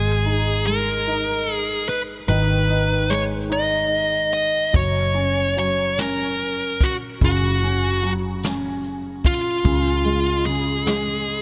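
A six-eight pop ballad in F# major, this heartfelt, romantic excerpt moves at a slow 49 beats per minute, counted in dotted quarters with a straight feel. A fuzz lead guitar carries the melody up front, its picked, compressed tone distorted and trailed by delay. Beneath it, a felt-muted upright piano plays soft, mellow accompaniment thickened with ensemble chorus, while a vintage fingered electric bass supplies dark, round, punchy low notes from its foam-muted, amped sound. A jazz brush drum kit enters at 4.7 seconds with hi-hat, a medium-tuned snare and a boomy kick, giving an acoustic, natural studio-room presence. The harmony shifts from G#5 to F#5 at 4.7 seconds and reaches C# at 9.7 seconds, all set in light reverb and small room ambience with a bright 1980s-style digital sheen.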